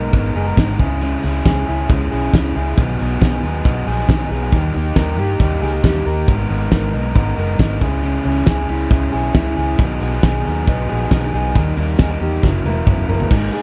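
Jangly indie pop with a bright, nostalgic mood, this short cut from a longer piece sets a crunchy overdriven guitar's picked chords against arpeggios from a slightly broken-up, lo-fi electric guitar played through a small old amp and coloured by tape echo. Underneath, a dark, round, foam-muted vintage electric bass adds punch, while a loose, up-front acoustic drum kit with a fat snare, punchy kick and dark cymbals pumps in a small room. The drums play a fill from 12.4 to 13.3 seconds as the chords move onto F#7.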